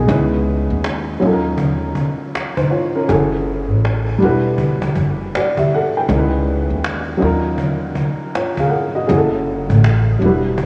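Soaked in a cavernous ambient reverb and cassette-tape haze, this dreamy, nostalgic and melancholic lo-fi hip hop excerpt sets an intimate, low-pass-filtered dark upright piano, with audible action noise and a short, mellow sustain, up front beside a pizzicato upright bass on steel strings. A distant, woody cajon with faint snares and vintage 12-bit sampler grit sits back in a large room, and all three move through a swung cycle of lush minor ninth chords that closes on a minor seventh.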